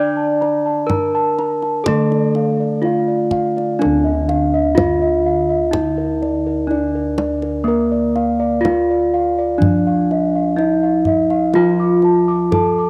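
Opening on a ringing, up-front bronze metallophone melody played with a wooden mallet, a brighter horn-mallet metallophone accompaniment that drops out at 3.8 seconds and returns at 11.6 seconds, and round, beating bossed gongs in the bass, this stately, hypnotic Javanese gamelan passage in D pelog moves at 62 BPM in a straight 4/4 as a second set of boxy bossed gongs spins arpeggios above and a deep, dry kendang carries the percussion, captured as a home cassette recording with moderate spring reverb and cut from a longer piece.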